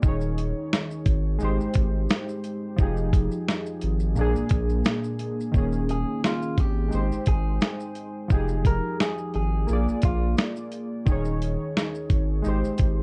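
A swung, gritty beat at 87 BPM drives this reflective, nostalgic lo-fi hip hop excerpt, its dusty sampler-style kit pairing a thumpy kick and medium-tuned snare with hi-hat and shaker, while a deep, saturated sub bass sits up front beneath it. Warbling, detuned synth keys with a cassette-tape haze and chorus cycle through Eb7sus4, Abmaj7, Fm9 and Bb7. A softly filtered, slightly broken-up electric guitar melody surfaces between 5.9 and 10.3 seconds, all set in a light reverb with a tape-worn character.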